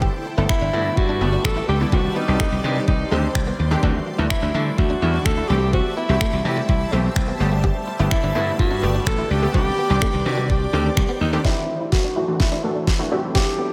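Dance-pop at 126 BPM in G major, upbeat and euphoric, where a breathy, whispered alto saxophone enters at 0.5 seconds to carry the melody over a punchy slap bass and an electronic R&B kit with knocking kick, deep snare and finger snaps, while a shimmering ethereal pad sustains chords and a detuned sawtooth pluck and a compressed clean electric guitar riff sit in the background of a dreamy, reverb-soaked mix, before the bass drops out at 11.4 seconds for a build-up with a drum fill and filter sweep over chords moving from Gadd9 through Cmadd9, Dadd9 and C6.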